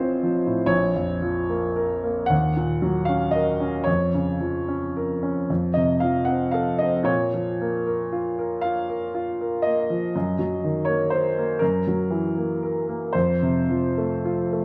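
Set in 12/8 and shaped with free rubato, this yearning, wistful romantic nocturne for solo concert grand piano, heard up front through close, detailed microphones with moderate recital-hall reverb, moves from F/A through Bbm, Ebm7 and Gb7 before settling on F at 13.1 seconds, its clear, open tone and deep bass spanning A1 to Gb5 in a passage cut from a longer piece.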